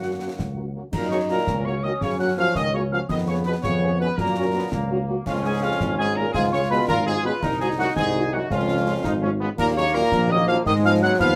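Military-style march for wind band in a straight 6/8, spirited and festive, cut from a longer piece. A dark, distant trumpet section carries the melody while a pure, vibrato-tinged piccolo and a soft-attack euphonium add second lines, over a background French horn section, tight, bright trombone chords and a mellow tuba bass. Concert snare, bass drum and clash cymbals with dark cymbal tone enter at 0.4 s, sounding close and dry against the light reverb on the band.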